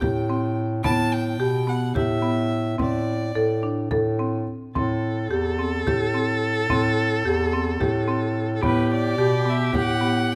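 Hypnotic and restless, this contemporary chamber piece in 7/8 moves at 216 BPM counted in eighths, set in A dorian, cut from a longer work. A woody marimba struck with hard mallets spins arpeggios throughout over a mellow, up-front bass clarinet bass line and a deep frame drum played with hard hands in the background. A nasal, earthy violin carries the melody from 0.0 to 3.6 seconds and returns at 8.6, while a focused viola with vibrato adds a second line from 4.8 seconds, all under light reverb with close, detailed microphones and a faint mains hum.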